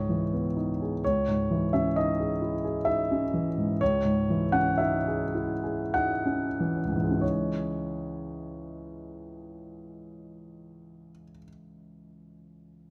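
This is impressionist classical solo piano in C# minor, a wistful and mysterious fragment cut from a longer piece. It moves in a slow, rubato 3/4 between 44 and 66 BPM, with the instrument tuned to A4 = 443 Hz. A grand piano plays alone throughout, ranging from C#2 up to F#5, its tone clear, natural and placed up front. The harmony opens on C#m9 and moves to C#madd9, and the tempo keeps slowing through the first passage until a new section begins at 7.2 seconds and runs to 10.7 seconds, before the fragment closes at 12.9 seconds. Close, detailed microphones capture the instrument, with only a light reverb around it.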